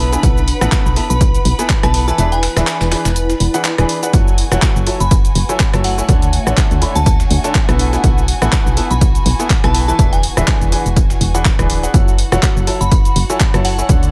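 A swung 123 BPM groove drives this soulful, bittersweet piano house excerpt in F# minor: a punchy, tape-warm electronic kick sits up front, dropping out from 2.2 to 4.1 seconds, over a layered house kit of handclaps, hi-hat, rim click and shaker, and a very quiet, gritty sampler-style kit adding hi-hat, snare and tambourine. A bright, woody upright piano riff with delay plays over a round, mellow FM bass, while a lush bowed string section with vintage sampler grit and a blurred, evolving granular pad steeped in its own reverb pump in the background. From 1.1 seconds a glassy, crystalline synth bell with chorus, tremolo and delay adds a warbling melody, and the dry mix moves through a B7sus4, E7, F#m7 and Dmaj7 progression.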